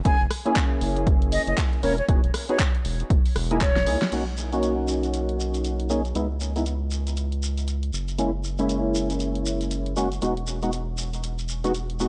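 Deep house with a warm, relaxed mood, built on hollow, chorused organ stabs with analog delay that take on a filter sweep from 4.1 seconds, a round, deep analog bass pumping beneath them, and a gritty sampled drum kit with fat snare, handclaps, rim clicks, hi-hat and crash. A punchy electronic kick drives the opening until 3.7 seconds, and a breathy, close-miked concert flute carries the tape-echoed melody until 4.1 seconds, when a grainy shekere arrives after a drum fill from 3.7 seconds. The mix is dulled by a cassette tone and light reverb.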